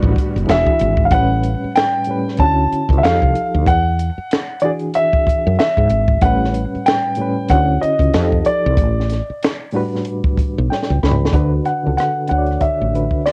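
Smooth and sensual, this short neo-soul and R&B excerpt sways with a lazy swung feel in a cassette-tinged home recording that sits dry and close. A dark, mellow grand piano carries the melody up front, its tape coloring giving it a worn softness, while a bright, reedy electric piano shimmers underneath with a fast tremolo, playing through its built-in speakers. A woody fretless bass, growly and round with a hollow-body character, anchors the low end, and a compact cocktail kit with a high-tuned snare, punchy kick, rim clicks, toms, hi-hat and finger snaps keeps a cozy, rolled-off pulse. Muted, veiled strings breathe lush bowed chords in the background only through the opening 1.1 seconds. The harmony drifts through rich ninth chords, the electric piano and drums both fill just before 11.3 seconds, and the passage settles onto a D6 chord.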